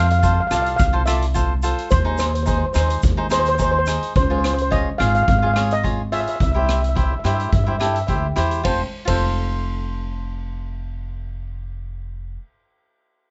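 A shimmering double-seconds steel pan carries the melody over crisp picked cavaquinho and a growly, up-front pizzicato upright bass in this festive, bouncy calypso excerpt, joined by a street-band drum kit with a boomy kick and dark cymbals that drops out at 9.2 seconds and a grainy tube shaker tucked in the background until 4.0 seconds, all under light reverb.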